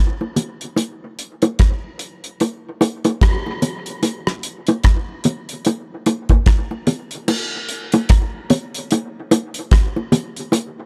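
Reggae with a spacious, hazy mood and a swung sixteenth-note feel, this fragment of a longer piece sits in a dark production with a touch of light reverb. Round, low-tuned bongos played with hard hands enter at 0.2 seconds, close and up front, carrying a dub echo. A dry, damped 70s drum kit with a tight kick, hi-hat, rim click and crash cymbal joins at 0.4 seconds, and the groove moves into a new section at 7.3 seconds.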